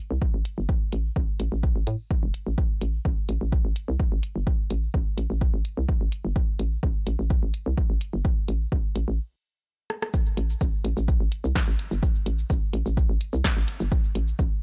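A straight 4/4 pulse at 127 BPM drives this hypnotic, clinical minimal techno excerpt in A minor, cut from a longer piece. An up-front electronic kick with a tape-warm, punchy analog character anchors the groove from 0.2 seconds, joined at 0.5 seconds by an analog drum machine supplying hi-hat, rim click, shaker and snare, its kit re-recorded in a small room. A hollow, knocking FM bass with a fast, decaying attack bounces between E1 and A2, pumping through sidechain compression. After a stop from 9.2 to 10.1 seconds and a drum fill at 9.9, the track drops into its second section for the remaining seconds. The sound is dry and gritty, with a dark top end that gives the hardware recording a close, unadorned feel.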